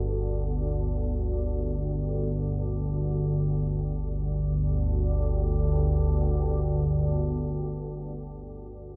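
Bathed in a huge ambient reverb, this unsettling, desolate ambient fragment in free time rests on a calm, solo organ-like drone placed up front in a low register, its nasal, sine-and-triangle unison tone shaped by ensemble chorus, built-in reverb and delay, swelling in with a slow attack and holding a G5 chord with a long release before moving into a new section at 3.8 seconds and being cut off at 8.3 seconds.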